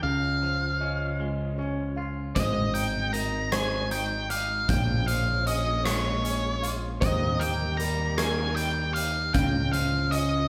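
Euphoric and hopeful, this post-rock excerpt in Ab major moves at a slow 52 BPM in 6/8, with a dark, fuzz-distorted octave lead guitar carrying the melody up front over a growling, overdriven picked bass, twangy clean electric guitar arpeggios, soft felt-muted upright piano arpeggios with audible action noise in the background, and very quiet bowed strings holding sustained chords with vibrato, while a huge arena drum kit with a punchy kick, hi-hat and rim click enters at 2.4 seconds, the whole band playing live in one room under a moderate large studio reverb through chords moving from Db to Abmaj7, Bbm7 and Eb.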